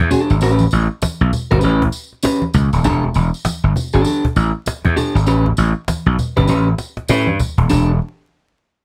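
A growly, overdriven slap bass opens this sly funk excerpt up front at 99 BPM in E dorian, swinging its sixteenths over a loop of A9 and Em7. A compressed, picked electric guitar sits just at the edge of break-up beside it, while a woody cajon played with hard hands and faint snares drives the groove, low-tuned congas with a thin skin sit in the background, and a jingly tambourine adds sparkle. A drum fill runs from 6.5 to 7.7 seconds, and the whole piece carries light reverb and a bed of vinyl crackle.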